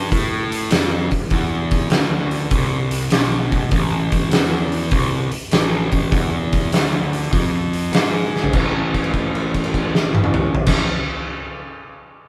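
Blues rock and southern rock in a power trio vein, this gritty, heavy swung excerpt pairs a growly, overdriven picked bass, spanning A1 to A2, with an oversized, low-tuned drum kit whose fat snare and punchy kick sit up front in a bright stone room, all in light reverb as a live band in one room, until a drum fill at 8.2 seconds leads into a note held from 8.5 to 10.6 seconds.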